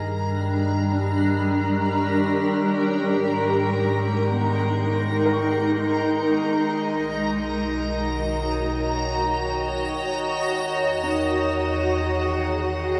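A bright, blurred granular cloud pad opens this weightless ambient excerpt in free time, sitting up front with slow-attack sustained chords while a dark, ominous bass drone rumbles beneath it through a phaser. Alongside them, an overtone-sweeping drone adds resonant, moving overtones through a chorus, and a reversed, dreamy texture holds a high Bb5 with a granular sheen. At 0.9 seconds a felt-muted upright piano enters, very quiet and intimate, its mellow, vintage arpeggios carrying audible action noise. The harmony drifts from Gm to Abmadd9, then B, and settles on Emaj7 at 10.4 seconds. A wet shimmer reverb with a 7.4-second decay wraps the whole mix in a warm, floating haze.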